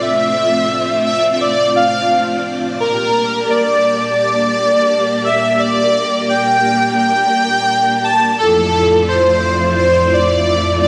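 A soft, detuned supersaw carries the melody up front with tape echo, floating over lush, vintage string-machine chords thickened by ensemble chorus and 12-bit sampler grit in this nocturnal, driving synthwave excerpt in D minor at 86 BPM, moving from Dmadd9 to Gmadd9 at 2.8 seconds and settling on Dmadd9/F at 8.4 seconds within a moderate recital-hall reverb.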